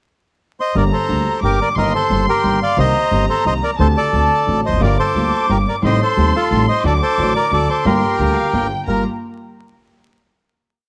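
A reedy, close-miked bandoneon opens this tense, dramatic tango waltz with a rubato pickup and carries a motif-based melody partly doubled in thirds, while a distant, earthy chamber violin section adds a bowed counter-melody above, an intimate grand piano with audible action noise and a woody pizzicato upright bass mark the accent on one, and a very quiet, biting chamber string section joins with stabs at 4.8 seconds, all in a small room with light reverb and vinyl crackle until the final chord.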